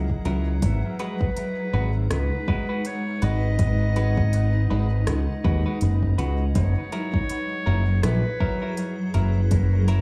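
A bright, up-front fingered electric bass anchors this deep, meditative ambient dub excerpt, alongside an overdriven electronic kick, crisp hi-hat and rim clicks from a tape-tinged electronic kit, a blurred, evolving granular pad holding sustained chords, clean picked guitar stabs and a smooth classical-style clarinet melody, with dub echo trailing the clarinet, guitar and kit in an echo-heavy mix that moves between F#7 and G#m7.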